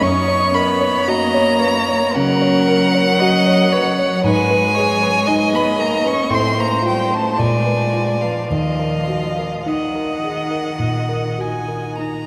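The rhythm moves in a slow 4/4 pulse of 50-59 BPM, stretched and pulled by rubato. This slow romantic movement for piano quartet, cut from a longer piece, sits in Eb minor and feels elegiac and yearning. A single bowed violin carries the melody up front with a rich, smooth and even vibrato tone, though it sounds set back in distance. A second violin, warm and close, and a focused, close cello each shape a second line beneath it. The concert grand piano accompanies with deep bass and short sustain, moving from Gb through Abm and a Bb7b9 before settling on Ebm at 8.5 seconds. A huge, wet reverb places the ensemble in a vast, echoing space, and the first violin and cello stop at 12.0 seconds while the second violin and piano ring on to 12.3 seconds.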